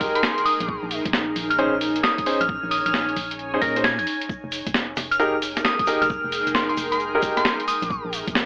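Clear, intimate baby grand piano stabs with audible action noise open this late-night, skippy two-step UK garage excerpt in F minor at 133 BPM, alongside a hollow, organ-like FM bass and a cloudy, detuned granular pad, both pumping to the sidechain, a knocking layered electronic kick, and a gritty, compressed sampler-style breakbeat kit with hi-hat and a medium-tuned snare up front, while a glassy, crystalline synth bell carries the melody from 0.2 seconds through chorus, phaser and tape echo, a grainy egg shaker joins in the background at 4.3 seconds, and the whole excerpt sits in a wet studio reverb with an AM radio sound as Fm11 and Bbm11 chords alternate.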